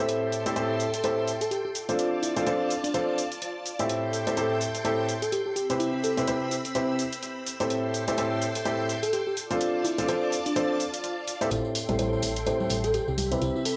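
Piano house with a bittersweet, soulful feel and a swung 4/4 groove, built on a woody, up-front upright piano riff that carries audible action noise, filtering and tape echo, over shimmering string-machine violin chords and dry analog hi-hat and shaker, while a bell-like, sparkling FM electric piano melody joins at 1.4 seconds. At 11.5 seconds a build-up begins as a filter sweep moves across the upright piano, and a punchy, round FM bass enters alongside close, bright tambourine and congas. The sound is dry and gritty, set in a moderate digital room reverb, with chords moving through Am7, F6 and Cmaj7 in this short cut from a longer piece.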